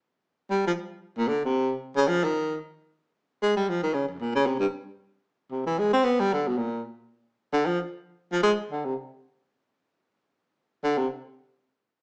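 Jazz with a playful, swinging feel, this short fragment cut from a longer piece features a lone baritone saxophone. The horn enters at 0.5 seconds and carries the solo until 11.1 seconds, moving through its low and middle register with a lilting swing. Its tone is mellow and whispered, with a breathy subtone, soft attacks and a gentle vibrato that give the line an intimate, jazz-style character. The saxophone sits up front, yet a wet studio reverb places the listener further back in the room. The overall sound has the boxy quality of a small speaker.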